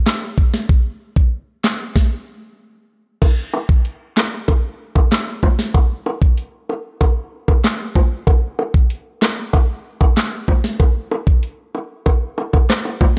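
Dancehall at 95 BPM in a tough, sultry straight 4/4, this excerpt from a longer piece opens on an up-front electronic afro-pop drum kit with a knocking kick, sharp snare, metallic hi-hat, rim click, handclaps and crash, re-recorded in a large room, which halts for a stop from 2.0 to 3.2 seconds before tight, high-tuned, band-limited vintage bongos played with soft hands join at 3.2 seconds, sitting lower in a dry mix.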